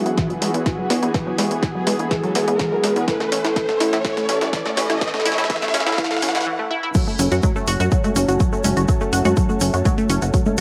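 Opening on a soft, round octave-layered synth lead with phaser and chorus over a detuned analog pad, an ethereal airy pad, a tight sawtooth arpeggio sequence and a driving sequencer bass, this hypnotic, dramatic melodic techno excerpt in F# minor at 124 BPM builds through filter sweeps, a background riser and an overdriven analog drum machine fill of congas, snare, hi-hat and crash over an up-front punchy kick, with the pumping parts moving from Eadd9 to A. The lead falls away at a break at 6.5 seconds, a grainy tube shaker joins just before the drop, and at 7.0 seconds the track drops onto F#m, all with a cassette-tape tint and light digital ambience.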